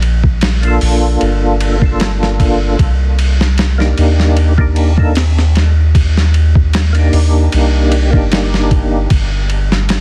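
A deep, round dub sub bass sits up front, its soft tone blending triangle and square waves with a fast attack and sustained notes, thickened by tube saturation. Driving this brooding, dark trip hop groove, an up-front boom bap sampler-style kit of thumpy kick, medium-tuned snare, hi-hat and ride sounds gritty, compressed and pitched down, with a tape-warm character and a touch of studio reverb, while the lightly swung 16ths give the beat a loose feel. A fat, percussive tonewheel organ enters at 0.6 seconds, its third harmonic percussion and key click shaded by chorus vibrato, tremolo, a slow rotary speaker, 12-bit sampler grit, tape echo and a filter sweep. The harmony moves from Gm7 to Cm7 at 2.8 seconds, and the organ drops out at 9.1 seconds, leaving bass and drums to finish the passage. Vinyl crackle and a dense, heavily limited modern master frame this short passage cut from a longer piece.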